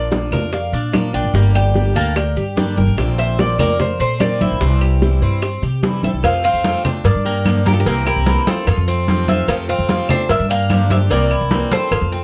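A thumpy, woody upright bass sits up front in this sunny, danceable excerpt of Cuban son and guajira at 148 BPM in F major, while a bright, metallic Cuban tres carries the melody and a second tres adds arpeggios. A small, fingerpicked nylon-string guitar plays a second line in the background, and a boxy, picked swing-style acoustic guitar supplies the accompaniment. Ringing congas lead the percussion over tight, high-tuned bongos and cowbell, grainy maracas and vintage woody claves, with a drum fill at 5.8 seconds leading into a new section at 6.2 seconds, all in light reverb with close, detailed miking.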